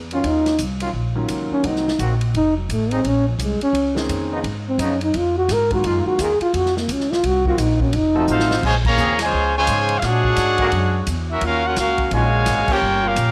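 In a small, lightly reverberant room, this dramatic, sultry big band swing excerpt in Bb minor at 172 BPM opens with a breathy, dark solo trombone over woody pizzicato upright bass, a soft-attack trombone section, an airy drum kit with punchy kick and sparse natural-toned piano, then after a drum fill at 8.3 seconds a bright, loose trumpet section takes the melody with a tight trombone second line beneath it, marked by band accents at 8.8 and 12.6 seconds.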